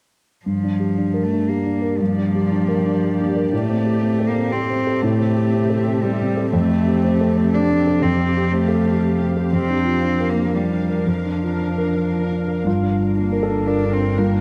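A dark, warm recital-hall sound frames this melancholic, fragile neoclassical piece in G dorian at 118 BPM in a rubato 3/4, where an up-front grand piano accompanies an intimate single cello playing a second line in airy sul tasto with light vibrato, a cloudy, detuned granular pad with its own reverb enters at 1.7 seconds with blurred, evolving sustained chords, and a pure, floating bowed double bass joins on a low G at 12.7 seconds as the harmony returns to Gm7.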